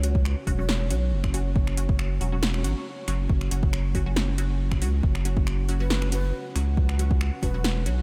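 Brooding and meditative, this deep dubstep excerpt moves at 138 BPM in a swung half-time feel, with a thick saturated sub bass up front and an overdriven electronic kick, a punchy deep house kit of finger snaps, metallic hats and snare, phaser-laced filtered dub chord stabs, a dark chorused ambient pad, and a breathy bamboo shakuhachi drifting in the background with dub echo at the start and again from 5.8 seconds.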